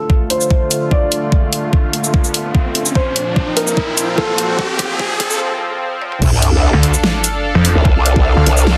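A half-time 4/4 groove at 147 BPM drives this aggressive, menacing slice of heavy wobble dubstep in D minor, cut from a longer piece. It opens with a build-up in which a dark, boxy concert grand piano carries the melody through a digital delay, over a lush supersaw pad that holds sustained chords, pumps against the sidechain and is swept through a low-pass filter. An electronic riser and sub drop run through this stretch while an overdriven, knocking electronic kick and an up-front drum kit with a huge snare, bright hats, shaker, toms and crash cymbal add a drum fill, before a short break at 5.4 seconds where the piano stops. The drop lands at 6.2 seconds on an impact, bringing in a saturated, wobbling growl bass shaped by a formant filter and chorus, joined shortly after by a snarling, detuned sawtooth bass with a moving notch and distortion. The chords move from Dm to Bbsus2 and back to Dm, and the whole sits in a moderate digital room reverb within a dense, heavily limited modern master.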